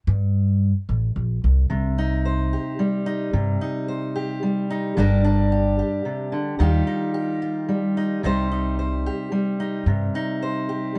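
A woody, pizzicato upright bass opens this wistful, stirring piece of indie folk on its own, sitting up front and moving through a low range over a G minor chord. At 1.7 s a fingerpicked steel-string acoustic guitar joins, bright with fresh strings and an auditorium-sized body, also placed close and carrying the accompaniment across a broader span. The two instruments unfold in 3/4 at 110 BPM with a straight feel, tuned slightly sharp with A at 443 Hz, as the harmony moves from C minor back to G minor, then to a lush E-flat add9 before settling on C minor again. The bass drops out at 10.1 s, leaving the guitar to ring on briefly in light reverb as the arrangement builds. The sound is intimate and softly rounded at the top, and the clip is cut from a longer piece.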